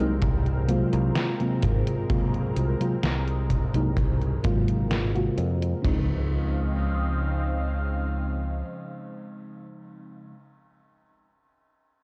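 A faded cassette haze and a light small-room reverb frame this nostalgic vaporwave excerpt in Db major, drifting at 64 BPM in straight 4/4 and moving from Ab13 to Dbmaj9 at 5.8 seconds. A soft, round FM electric piano with analog chorus and tape echo sits over a thick, detuned sawtooth unison pad with chorus and phaser, while a bright, growly fingered bass plays up front until 8.6 seconds. Two drum parts stop by 6.1 seconds: a gritty, saturated low-tuned kit with punchy kick, dark ride cymbal and toms in a pumping big room, and a detuned 8-bit drum machine adding sampler-style hi-hat and snare through gated reverb.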